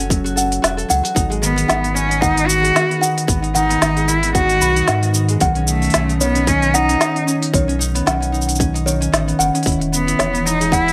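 A clear, focused cello carries the melody up front from 1.4 seconds, its bowed vibrato touched with tape echo, in a delicate, autumnal folktronica piece at 113 BPM with a light swing. Fingerpicked concert harp arpeggios ring through their own tape echo, and a woody, hollow kalimba adds a high second line with 12-bit sampler grit. Beneath them sit a round sine sub bass, a tight electronic kick, and a forward kit of woody snare, crisp hats and shaker, all over chords moving from F#m through G#m7 and Badd9 to E in this dry, short excerpt.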